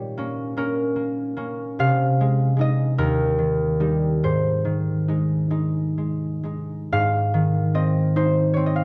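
A rubato 6/8 lilt at 41-51 BPM in dotted quarters carries this dreamy, graceful fragment of a classical solo piece in Ab major, where an up-front concert harp, fingerpicked and ringing from Eb2 to F5, moves through Gdim/Bb, Ab/C and Eb before settling on Ab at 4.3 seconds, all set in a dark production with a moderate recital hall reverb.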